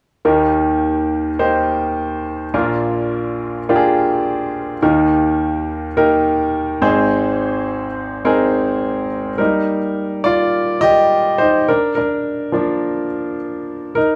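A bright grand piano opens at 0.2 seconds, playing hopeful, anthemic pop accompaniment in Eb major at 105 BPM in a straight 4/4 feel. Its tone is brilliant and natural, placed up front, and it spans from Ab1 to Eb5 as the harmony moves through Eb, Bb and Ab. At 9.4 seconds the passage turns to a new section where the piano takes a solo, returning to Eb and then Bb. A wet studio reverb with a short decay gives the sound the air of a band playing live in one room. This brief cut from a longer piece ends at 14.2 seconds.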